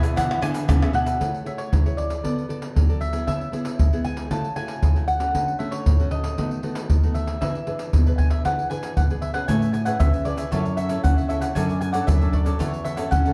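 An up-front percussion section of egg shaker, pandeiro, surdo and tamborim, played with hard hands in a live room around a tight surdo, drives this playful, sunny excerpt of samba and choro at 116 BPM in 4/4 with a straight feel in A major. Over it, a mellow mandolin carries the melody throughout, its picked double strings sounding round and touched by an analog delay. A nylon-string guitar fingerpicks a classical-style accompaniment the whole way, finger squeaks audible, while a second nylon-string guitar supplies a warm bass line and a crisp cavaquinho sits in the background; both of these play at the start and return from 9.5 s. A clear, jazz-style trombone adds a brief second line with light vibrato and scooped notes, gone by 0.9 s. The harmony moves from E7 through Amaj7, Bm7, C#m7, Dmaj7 and B7/D# before settling on Amaj9, F#m7 and A6/E, and a wet studio reverb places the ensemble further back in the room.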